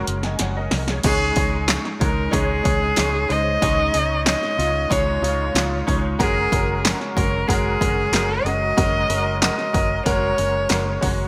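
A clear concert grand piano with ensemble chorus opens this anthemic, piano-driven pop excerpt at 93 BPM, joined at once by a drum fill from a punchy analog drum machine with gated reverb, tape-warm handclaps, hi-hat and crash cymbal, and a dark, foam-muted fingered electric bass. From 1.1 seconds a single bowed cello carries the melody up front with smooth, even vibrato and a rich tone, over chords moving between Gbadd9 and Dbsus2. Light reverb and bright 1980s-style digital production give the whole a glossy sheen.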